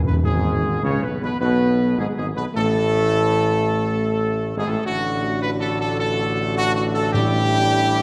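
A timpani fill with soft mallets opens this short cut from a longer classical piece, sounding at once with a mellow French horn section holding tight, sustained chords. The round timpani tone drops out by 1.1 seconds and returns near the close at 7.1 seconds, framing a solemn, regal ceremonial fanfare in a straight, stately four. The trumpet section carries the melody up front with a warm, smooth top and light vibrato, while a bright trombone section sustains chords in the background. Beneath them a solo tuba with a warm tone and smooth top anchors the bass line. The whole ensemble sits in a wet concert hall reverb with a long, lingering tail, and a faint mains hum can be heard underneath.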